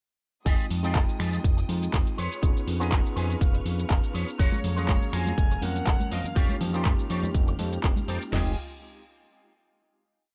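Sleek and sensual, this nu-disco piece moves at 122 BPM in F minor with a light 16th-note swing, driven by a punchy four-on-the-floor kick, fat snare, crash and toms, over a layer of handclaps, finger snaps, shaker and warm hi-hats, with a thick, octave-jumping analog bass. A worn, slightly out-of-tune tine electric piano holds rootless chords with syncopated pushes through delay, lush bowed strings hold a sustained pad in the background, both pumping with sidechain, and a twangy envelope-filtered guitar picks a funk chord riff with chorus and delay. At 4.4 s a distant, roomy trumpet section adds short call phrases trailed by dub echo, bright congas and bongos enter a moment later, and the dry, close mix comes to rest on a final Fm9 chord at 8.3 s.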